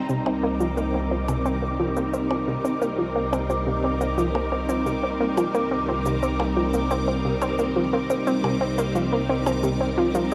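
Lush string-machine chords in C minor open this mysterious, expansive space-music excerpt, sitting up front with a vintage, full-bodied ensemble chorus and slow-attack, long-release swells. Beneath them, a fat, thick analog bass sounds decaying notes on a low C. High above, a bubbling, resonant texture steps through random filter changes, bright and coloured by chorus and its own reverb. From 0.1 s, a nasal, round analog pluck plays a sequencer-style riff with a fast attack and short decay, treated with chorus and tape echo. Electronic shaker and percussion blips, also echoed on tape, keep a straight 4/4 at 88 BPM, while a filter sweep moves across the synth arpeggio over a single Cm7 harmony. A huge, wet ambient reverb with a 7.9 s tail surrounds the parts for the full 10.3 seconds.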